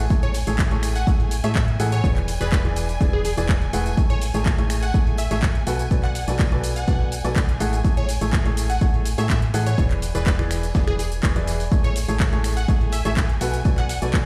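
A straight groove at 124 BPM drives this euphoric, feel-good piano house piece in A major, anchored by a punchy, tape-warm electronic kick sitting up front and a layered house kit of finger snaps, handclaps, shaker, ride cymbal and warm hi-hats, with a very quiet, gritty sampler-style kit adding hi-hat and snare and a faint, saturated tambourine tucked underneath. A round, dark FM bass with a fast, decaying attack pumps against the kick between E1 and A2, while a brilliant, woody upright piano plays a riff from E3 to F#5, coloured by tape echo and its own sidechain pumping. Behind them, a distant violin section holds lush, expressive bowed chords with vibrato, breathing with the same pumping motion. From 0.2 seconds a catchy, full-bodied detuned sawtooth unison lead carries the melody between G#4 and F#5, treated with phaser, lush chorus, cassette-tape colour and tape echo. The harmony cycles through Amaj7, E7 and Bm7, and the whole cut, taken from a longer piece, rings out in a stone-room reverb as if played on a big sound system in a bare room.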